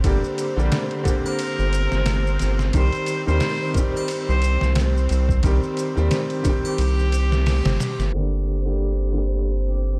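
Trip hop in a melancholic, dark mood, cut from a longer piece, built on a thumpy, gritty sampler-style drum kit with maracas and triangle in the background, a deep, round analog bass up front, and a bright, woody upright piano treated with tremolo and tape echo over lush, bowed symphonic strings. A straight-muted trumpet enters at 1.3 seconds with a nasal, distant solo melody roughened by vintage 12-bit sampler grit and tape echo, as the chords move from Gm to Cm. At 8.1 seconds the drums and percussion stop and a filter sweep opens a new section back on Gm, all within a dark, warm, low-passed small-room production.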